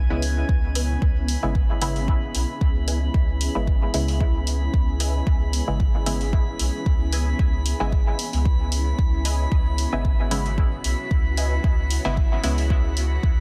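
A deep, layered electronic kick sits up front in this hazy, meditative dub techno excerpt at 113 BPM in C# minor, with a lightly swung, tape-warm hi-hat entering at 0.2 seconds and a round, soft sub bass with tube saturation holding a single C#m7 harmony underneath. A muted, detuned sawtooth chord stab with a filter sweep, chorus, phaser and dub echo carries the stabs, while a second, fainter filtered stab plays a higher riff in the background from 0.8 seconds. A cloudy, blurred granular pad and a glassy texture of drifting overtones each sit in their own reverb, both breathing with sidechain pumping inside a dense, heavily limited master.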